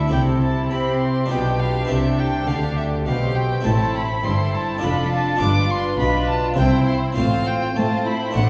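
From the first moment, a festive, lively baroque-style concerto movement sounds in full, moving at 102 BPM in a straight 3/4. A single bowed violin with a warm, smooth tone and vibrato carries the high melody from E5 to D6, sitting a little distant yet standing out above the ensemble. Beneath it, a rich chamber violin section in the background also plays the melody lower down, and a second, more focused violin section plays a supporting line. A distant viola section and a background cello section fill the middle and lower ranges with even, bowed tone, while a clear double bass section anchors the bass. A brilliant Italian-style harpsichord with octave strings plucks its accompaniment from the background as the harmony moves from C through G7/B, Am, Dm/F and G7 before closing the 8.5-second fragment on F/A. The whole group is heard from further back in a reverberant recital hall with a 1.4-second decay.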